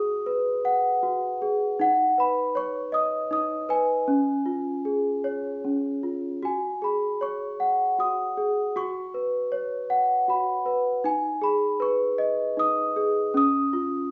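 In a rubato three-four lilt at about 78 BPM, this short lullaby for children sways gently, tender and sleepy in mood, and is cut from a longer piece. A solo celesta carries the whole 14.1 seconds, its bell-like, delicate tone struck with hard felt hammers and ranging from C#4 to D#6. Close-miked and up front, the instrument sounds sweet and full, while a large studio reverb with a 1.2-second decay adds a glowing halo around it in a small, live room. The harmony drifts from G#m7 through Badd9 and C#, then the opening phrase returns at 6.4 seconds over F#sus2, Bsus2/F#, G#m and back to C#. The open, suspended chords keep the music floating and unresolved, like a music box easing a child toward sleep.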